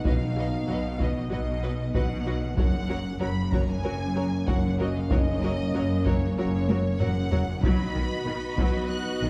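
Cinematic, epic orchestral film score in a dramatic, heroic mood, moving at 95 BPM in a straight 4/4. This excerpt is cut from a longer piece. A bright, intense violin section carries the melody high above the orchestra, while a second violin section adds a smooth, even line beneath it. The viola section supplies lush, vibrato-rich accompaniment, and a mellow, distant French horn section holds sustained chords with a soft attack. Cellos sit in the background, joined by expressive double basses to anchor the bass on harmony that moves from B to Gb at 2.6 seconds and back to B at 7.6 seconds. Taiko drums struck with hard sticks sound distant in a large room and play a fill from 6.7 to 7.6 seconds, all set in a moderate concert hall reverb with a dark production.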